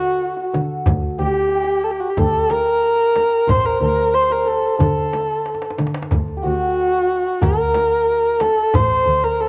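A dark, woody kamancheh leads this passionate, festive Persian modal passage in dastgah homayun on D at 91 BPM in a straight 4/4, its bowed line up front with vibrato and portamento. A bright, shimmering santur rings in the background, and a nasal, boxy bowed double bass carries the bass. A tight tombak played with hard hands and a deep, dry frame drum under soft hands enter at 0.5 seconds, with a drum fill at 5.5 seconds, all in light reverb and small-room ambience on a home cassette recording with a rolled-off top, cut from a longer piece.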